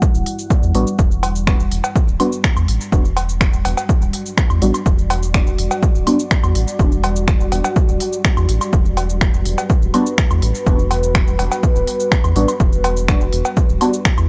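A punchy, up-front electronic kick drives this dub techno excerpt at 124 BPM in a straight 4/4, joined by a deep house kit of cabasa, finger snaps and smooth hats, with electronic cowbell and woodblock entering at 1.2 seconds under sidechain pumping and dub echo. Set in E minor and resting on a single Em7 chord, the mood is cavernous and deep. A round analog bass, detuned and tube-saturated, sits low from D1 to E2 and pumps against the kick, while a moody ambient pad of detuned sawtooth unison with a sub octave and a moving notch holds sustained chords with slow attack, chorus and reverb. A soft, wave-folded chord stab appears from 0.7 to 6.2 seconds and returns at 9.9 seconds, its decaying hits coloured by chorus, phaser and dub echo. The whole recording has a dry, gritty hardware character with transformer saturation in a digital ambience, and the pad carries a vintage 12-bit sampler grit of its own.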